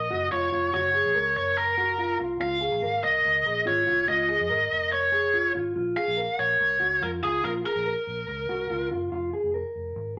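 A wet studio reverb surrounds this short cut from a longer jangly indie pop piece in 4/4 at 143 BPM, bright and nostalgic in mood, moving from Gb and Db to Bbm and Fm. An up-front, biting lead guitar carries the melody with picked, overdriven bite until 8.9 s, while a mellow, clean, compressed electric guitar plays fingered arpeggios underneath. A vintage foam-muted, fingered electric bass sits low in the mix with a round, amped tone.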